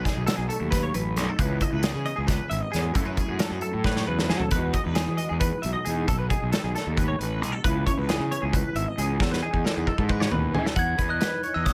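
Set in a straight 7/8, this wistful, bright math rock and midwest emo excerpt rides on a loose indie drum kit in a small, pumping room, its tight kick and medium-tuned snare up front, with fills at 3.9 and 9.2 seconds. A growly, overdriven fuzz bass punches alongside, while a twangy, compressed clean electric guitar picks bright arpeggios over a dark, mellow electric guitar in the background, both guitars treated with ensemble chorus. At 10.8 seconds a vintage, bell-like glockenspiel struck with hard plastic mallets rings in with the melody over jazzy seventh and ninth chords, all under a light reverb.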